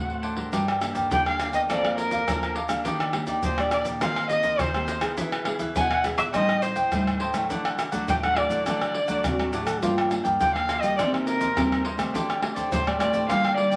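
Through a vinyl crackle and a wet studio reverb, this lively, yearning samba and choro cut at 103 BPM in G minor sets a smooth, up-front erhu melody full of vibrato and portamento over a fingerpicked nylon-string guitar accompaniment with finger squeak, a crisp, mellow cavaquinho, a second full-bodied nylon-string guitar on the bass line, and close, hard-handed pandeiro, tight surdo, tube shaker and tamborim, while a dark, breathy, distant trombone slips in a brief jazz-style second line at 9.2 seconds.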